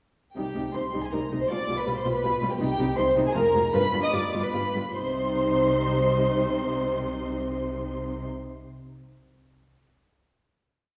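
A quick, classical-period movement for string orchestra in triple time, this brief complete piece feels urgent and dramatic, its pulse pushed and pulled with rubato and slowing between 2.1 and 5.0 seconds. High violins carry the melody with a soft, vibrato-rich tone, while a second, darker violin section doubles the tune an octave below with a smooth top and light vibrato, sitting more prominently in the balance. Violas supply repeated notes and sustained chords, sliding expressively between pitches, and the cellos give a lush, expressive foundation of repeated and held bass notes. The double basses double that bass line from beneath, bowed with gentle attacks and portamento. A short opening statement moving from C minor through F minor and G7 gives way at 5.0 seconds to a closing C minor chord, all heard from further back in a reverberant concert hall.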